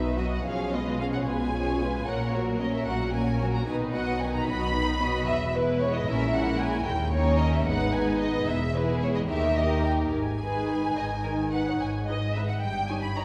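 In a straight, quick 6/8, this lively, spirited classical-period movement for string orchestra puts muted violins up front on the melody, with a second violin line close beneath them and violas adding accompaniment from a more distant spot. Cellos sit in the background and double basses stay close on the bass line, all five sections bowed con sordino with a dark, veiled tone, vibrato in the violins and violas and lighter vibrato in the low strings. A wet scoring-stage reverb sets the listener further back in the hall, and the excerpt breaks off at 13.2 seconds, shortly after a new section begins at 11.8 seconds.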